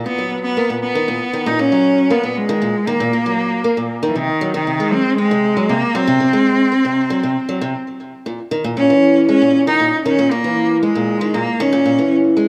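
A moderate echo-chamber reverb and small-room ambience frame this wistful, autumnal folktronica fragment at 117 BPM in C# dorian, cut from a longer piece. An old ladder-braced acoustic guitar, dark and boxy with audible finger squeak, picks up-front arpeggios through digital delay, while a single bowed cello, clear, smooth and even, with vibrato, carries the melody through its own delay. The chords move from Bmaj7 to G#7, and after a short break at 7.7 seconds a new section settles on C#m69 at 8.3 seconds.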